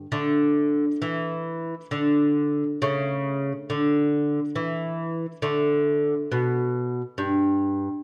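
Radiant and dance-like, this short excerpt from a longer classical piece presents a baroque-style dance in 3/4 at about 68 BPM, played with a flexible, rubato feel. A solo lute carries the whole passage from 0.0 to 8.0 seconds, fingerpicked and delicate on nylon double strings, some doubled at the octave, sitting up front in the low register from G2 to A3 as the harmony moves from D5 to A/C# at 2.8 seconds and back to D5 at 5.4 seconds. Light reverb and a dark production give the lute's tone a soft glow.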